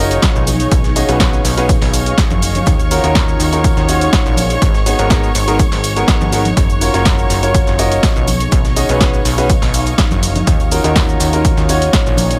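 A clear, woody upright piano riff with audible action noise and tape echo leads this euphoric, uplifting piano house excerpt at 123 BPM, pumping against a punchy electronic kick alongside a plucky sawtooth analog bass, lush bowed symphonic violin chords, a blurred granular cloud pad in the background, a punchy analog drum machine with hi-hat, shaker and snare, a gritty, very quiet sampler-style breakbeat kit, and softly ringing tambourine and congas, moving through B69, D#m9, G#m9 and F#maj7 in a dry mix.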